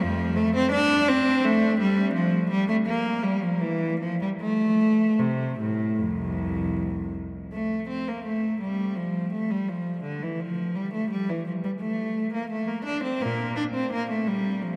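A lone cello sounds close and focused, ringing into a vast, echoing cathedral whose long reverb hangs behind every note. This is a baroque-style suite movement for unaccompanied cello in F major, radiant and flowing, moving in a rubato 4/4 at roughly 75-86 BPM. Bowed with vibrato by a single player, the clear line ranges from C2 to D4 across this brief cut of about 14.8 seconds taken from a longer piece, with its opening phrase returning at 7.5 seconds.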